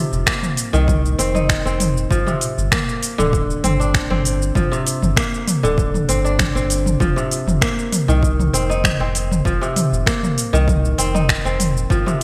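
A bright, 1980s-style digital sheen and a lush hall reverb frame this hypnotic organic downtempo excerpt in a straight 4/4, moving from F5 to Gm and back to F5 at 7.0 seconds. Up front, a crisp, ringing fingerpicked kora spins arpeggios through a delay, over a round, dark analog bass that sustains deep notes with tube saturation and sidechain pumping. A layered deep house kit of cabasa, finger snaps, metallic hi-hats and toms sits forward, overdriven and bathed in studio reverb, joined from 0.3 seconds by a punchy, overdriven electronic kick.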